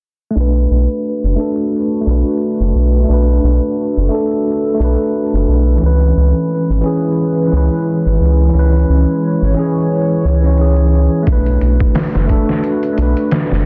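A tine electric piano heard through built-in speakers, with harmonic tremolo, tape echo and a filter sweep, opens this hypnotic, smoky trip hop excerpt at 88 BPM in B dorian with a lightly swung feel; it is soon joined by a round, deep analog bass up front and a moody, detuned pad in the background carrying chorus, phaser and 12-bit sampler grit, moving from Bm7 to C#m7 and back to Bm7, before a gritty, pitched-down sampler-style drum kit with a thumpy kick and overdrive enters at 11.3 s, within a dense, dry, heavily limited master.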